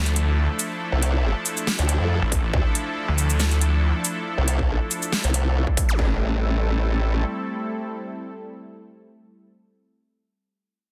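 Set at 139 BPM in 4/4 with a half-time feel and a light 53% swing on the sixteenths, this aggressive, menacing heavy wobble dubstep cut sits in A minor and opens mid-drop, a fragment of a longer piece. A growling, detuned sawtooth bass snarls up front with distortion and overdrive until 3.9 seconds, while a formant-sweep wobble bass built from pulse and sine tones, saturated and thickened with chorus, enters at 0.9 seconds and carries on to 7.2 seconds. The drum kit brings a huge snare, metallic hats and shaker with studio reverb, joined at 2.3 seconds by a layered, distorted electronic kick. Beneath it all, a lush, evolving supersaw pad holds sustained chords with sidechain pumping, moving from Dmadd9 to Am7 as the section shifts at 6.0 seconds, just after a brief electronic zap. The mix is dry, dense and heavily limited, with the basses and drums pushed hard to the front.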